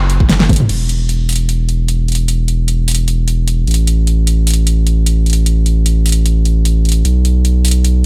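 A deep, thick sub bass opens this short future bass excerpt at 0.0 s, its sine tone saturated through tube warmth with a fast attack and sustained body, pumping under sidechain compression and sitting up front from E1 to B1. A pop drum kit joins almost at once, and an electronic kick drum lands a punchy, layered hit between 0.2 and 0.6 s while a drum fill runs from 0.3 to 0.7 s. From there the piece settles into its main section at 151 BPM in 4/4 and F# minor, felt in half-time with a light swing on the 16ths. The kit carries a fat snare, metallic hats, crash cymbal and toms, sounding produced and tape-warm, placed up front with a touch of studio reverb. The overall mood is lush and dreamy, with a dry sound.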